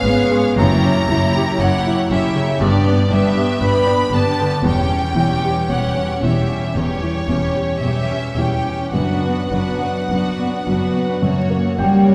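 A reverberant concert-hall sound, touched with vinyl crackle, frames this short excerpt of a romantic movement for piano and orchestra, passionate and tragic in mood, moving slowly at about 51-61 BPM in 4/4 with rubato phrasing. The clear concert grand piano sits up front carrying the melody, its deep bass reaching down to E2 while its range extends as high as G5. Violins share the melody in a focused, bowed ensemble tone with vibrato, while a second violin section adds a smooth, even second line beneath. Lush violas hold the accompaniment in the background, and cellos and double basses anchor the bass, the cellos very quiet. The harmony moves through chords such as F#7b9 and C#dim/E before arriving at Bm/F# and F#. At 11.8 s an airy, hollow flute ensemble slips in on a single high G5 as mellow French horns enter with sustained chords just before the cut at 12.1 s.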